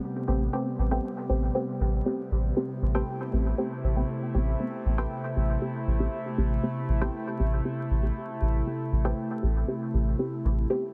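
A round, up-front sub bass anchors this nocturnal, meditative dub techno excerpt at 118 BPM in A minor, under a warbling, nostalgic tape-like pad holding an Am9 chord with chorus and built-in reverb, a full-bodied, nasal chord stab carrying phaser and dub echo, and a quieter, muted, detuned stab riff from 0.9 to 9.2 seconds, while a filter sweep runs across a synth stab and vinyl crackle sits in light digital ambience on a dense, heavily limited modern master.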